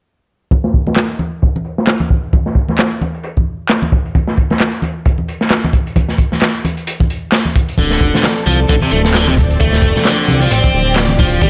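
Raw and gritty, this breakbeat excerpt opens on a crunchy, saturated acoustic drum kit with a tight kick and rolled-off top, swept by a filter throughout, alongside close, low-tuned congas. Layered electronic handclaps with overdrive join in over a swung groove. At 7.8 s the harmony settles on Dm7 as three parts enter together: a fat, detuned sawtooth bass and a biting, picked electric guitar riff with delay, both up front, and a bright bowed string section with vibrato and sidechain pumping, all set in studio reverb.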